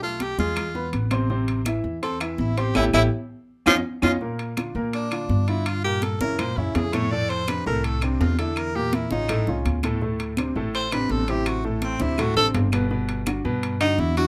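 Afro-Cuban jazz, sophisticated and fiery, in which a clear, present tenor saxophone with light vibrato solos up front across the whole fragment, over a natural baby grand piano with short sustain, a thumpy, woody pizzicato upright bass, bright high-tuned congas in the background, ringing metal-shelled timbales entering at 0.2 seconds and very quiet saturated claves, all set in a moderate club reverb, with a band accent from 2.8 to 4.2 seconds.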